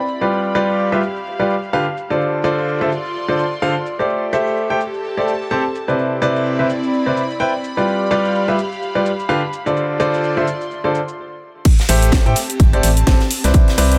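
A light reverb and small room ambience frame this euphoric, feel-good piano house excerpt, cut from a longer piece and carried by a swung groove. A clear, polished baby grand piano sits up front from 0.2 seconds, playing the riff with sidechain pumping and tape echo over a cycle of G7, Dm7, Am7 and Cmaj9. Beneath it, a soft, breathy pad with a warbling vintage chorus lays down a sustained texture with a long release that also pumps with the sidechain. A layered, tape-warm house kit with a cracking snare, hi-hat, shaker and crash cymbal plays through low-pass filters that keep it muffled. After a brief stop at 11.2 seconds, the drop at 11.7 seconds brings in a punchy, up-front electronic kick and a distant acoustic kit with bright cymbals and a medium-tuned snare. Moments later, at 11.9 seconds, a hollow, dark, organ-like FM bass joins with a fast, percussive attack.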